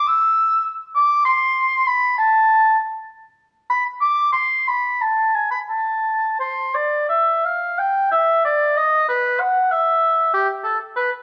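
Worn, warbling cassette tape gives this recording a drifting pitch, and a recital hall's wet reverb surrounds the single line. It is a short excerpt from a longer classical piece: a baroque-style fantasia for unaccompanied oboe, solemn and grave in mood. The oboe plays alone from 0.0 to 11.1 seconds, spanning G4 to E6 with a warm, vibrato-rich tone that sits up front yet sounds distant and roomy. The pulse moves freely in rubato at around 56 to 69 beats per minute, counted in dotted quarters in 6/8. The music opens in A minor and shifts to E minor at 7.8 seconds, restating its opening material in the new key.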